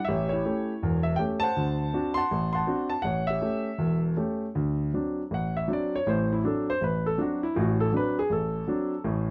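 A natural-toned grand piano sits up front in this playful, sophisticated solo jazz fragment cut from a longer piece, swinging its eighths with a loose rubato feel across a range from deep bass to high upper notes, moving between A7 and D7 chords and opening into a new section at 4.6 seconds, all in a light reverb.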